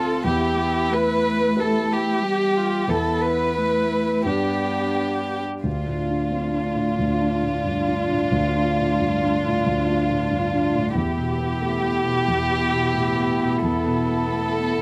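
This neoclassical passage for piano and strings opens with all four parts sounding together from the start: a chamber violin section carrying the melody, a grand piano and a viola in accompaniment, and a cello tracing a second line beneath. The mood is reflective and longing, and the rubato feel lets the time breathe freely within its steady four-beat metre. Up front, the violins sound warm and intimate, with vibrato, a soft attack and the hushed, sul tasto colour of bowing over the fingerboard, while the piano is mellow and slightly boxy, its accompaniment ranging from deep bass to the upper middle. A single viola adds a nasal, woody voice with a smooth top, and a lone cello, dark and also played sul tasto with vibrato, sits in the background. The harmony moves through Em, Asus2/E and G before settling on Dm at 5.7 seconds, where a new section begins, then returns to Em at 11.0 seconds. 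The sound is close and detailed with little reverb, and the passage is cut from a longer piece.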